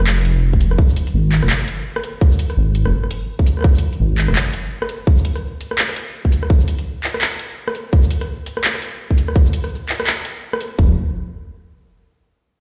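Half-time drum and bass rolls at a swung, loping pace, its layered electronic kit split between a tight kick with toms and a lighter layer of handclaps, rim click, shaker and metallic hi-hats, both sounding up front and roughed up by a small room. A deep, rumbling detuned saw bass with tube saturation growls under the opening beats until about 4.4 seconds, then returns briefly near 10.8 seconds as the drums drop away. The mood is dark and spacious, the whole passage cut from a longer piece and set in a big, bare-room ambience.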